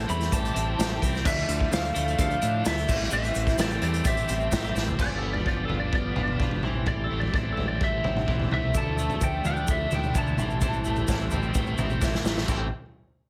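Restless and cool, this indie rock excerpt rides on a growling, overdriven fingered bass and a roomy acoustic drum kit played with bundle sticks, with dark cymbals and a drum fill at 4.8 seconds. A bright, clean twelve-string electric guitar and a biting overdriven guitar with subtle chorus and slapback echo play riffs, while a very quiet tonewheel organ holds clear chords through a slow rotary speaker with audible key click, and a grainy tube shaker ticks in the background, dropping out between 4.9 and 8.7 seconds. From 5.0 seconds a slightly broken-up, twangy lead guitar takes a solo over minor-seventh and G7 changes, all framed by light reverb and a heavily compressed, radio-like sound.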